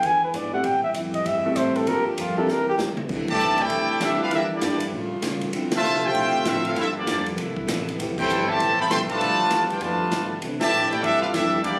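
A swinging 196 BPM big-band groove in 4/4 opens this energetic excerpt, where a veiled, bucket-muted trumpet solos over dark archtop guitar, warm saxophone chords, woody pizzicato upright bass, punchy drums and a brief intimate grand piano until a drum fill at 2.5 s hands off to a bright, vibrato-laden trumpet section up front with the trombone section behind from 3.3 s, settling into C major with band accents and chords like Fmaj9#11 and G13 in a roomy club reverb captured on a phone.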